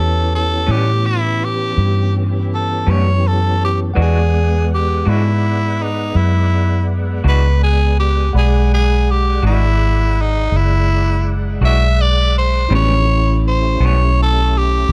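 Blues in 12/8, gritty and rollicking, heard in a short cut from a longer piece. A raspy, growling tenor saxophone carries the melody up front, bright with vibrato in a jazz style, its phrases trailing dub echo. Beneath it, a round, foam-muted electric bass sits close and dark, while a tine electric piano, clean and direct, adds accompaniment in the background, also fed into dub echo. A clear tonewheel organ holds sustained chords far back through a slow rotary speaker and chorus vibrato, and an electric guitar through a small old amp, slightly broken-up, picked and lo-fi with tremolo, joins at 0.7 seconds. The harmony moves from A9 to E9 at 4.0 seconds and returns to A9 at 12.7 seconds, all set in a dry room within an echo-heavy mix.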